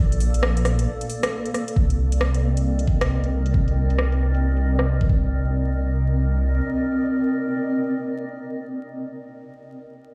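A cloudy, granular pad holding a Bbmaj7 chord opens this wistful, melancholic future garage excerpt at 135 BPM in C dorian, over a deep, rumbling detuned saw bass, both pumping with the sidechain, while a garage kit of filtered metallic hats and rim clicks swings on the 16ths. After a brief break, a knocking electronic kick arrives at 1.8 s as the harmony moves to Cm9 and a filter sweep runs across the drums. The kick and kit fall away near 5.2 s, leaving the mellow, blurred pad and dark bass to carry on, all heard as if played through a big sound system in a bare room with lush hall reverb and vinyl crackle.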